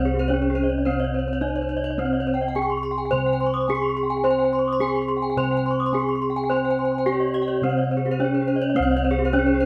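Brilliant and hypnotic, this gamelan excerpt sets a bronze metallophone melody, struck with a horn mallet and shimmering from its paired tuning, up front in a boxy small room. Beneath it, a soft, airy metallophone played with padded disc mallets carries the accompaniment, while dark, round bossed gongs under padded beaters hold the bass, also up front. Two more metallophones play arpeggios, one bright and beating, the other warm and ringing, and the whole band plays live together in one room with a wet studio reverb.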